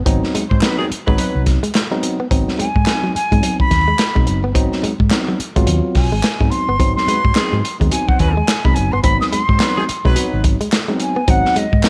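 A swung sixteenth-note funk groove at 107 BPM drives this energetic excerpt in Ab mixolydian over a single Ab7#9 chord: a gritty, saturated breakbeat kit sits up front beside a dark, round hollow-body bass, a bright, clean guitar riff with spring reverb hangs in the background, worn and slightly out-of-tune electric piano stabs punctuate, and faint, hollow handclaps sound from a distance, while a mellow horn section in octaves adds a brief second line at 0.5 seconds and returns at 7.1 seconds, and from 2.6 seconds an airy, crisp-attacked silver flute carries the melody with slapback echo, all inside a small room ambience.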